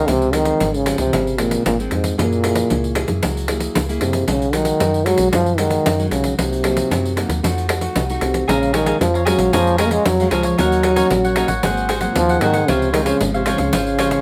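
A breathy, whispered trombone carries the melody up front with light vibrato and scooped notes, over a round, woody FM bass, a fingerpicked nylon-string guitar with audible finger squeak in the background, and a jingly, close and dry pandeiro played with hard hands. This bittersweet, yearning samba-choro moves at a straight 114 BPM in Db major, its harmony running from Dbmaj7 through Gb9, Cm7b5 and F7b9 before settling back on Dbmaj7. A crisp, picked cavaquinho sounds briefly at the very start and returns at 8.5 seconds, and light reverb sits over the whole short cut.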